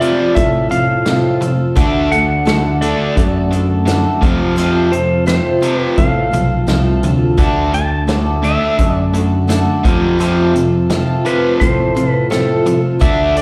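A clean lap steel guitar carries the slide melody with slapback echo over a shimmering, octave-doubled twelve-string acoustic guitar, a biting double-tracked overdriven guitar riff, an acoustic drum kit with a punchy kick played with bundle sticks, and a bright fingered electric bass that joins at 0.4 seconds, giving this hopeful folk rock and heartland rock excerpt, built on F and D chords, the feel of a live gig heard through the venue's PA with recital hall reverb.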